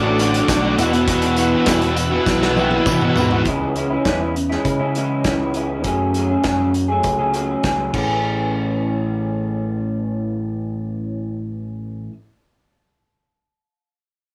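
Indie rock at 101 BPM in A major, this carefree, jangly excerpt opens with a buzzy combo organ holding sustained chords and a fuzz guitar pushing a distorted, tape-echoed riff, both dropping out around 3.5 seconds. Meanwhile, an electric guitar through a small old amp plays a slightly broken-up, lo-fi riff with analog chorus, sitting up front for the whole 12 seconds alongside a growling picked bass with overdrive. A loose acoustic drum kit with a tight kick and medium-tuned snare, pumping in its small room, comes in at 0.2 seconds, joined briefly by a jingly tambourine in the background, and a drum fill at 2.3 seconds leads into the next section. The harmony moves from D and Esus2 to C#m, F#madd9 and Amaj7. Light reverb places the whole band in a small room ambience.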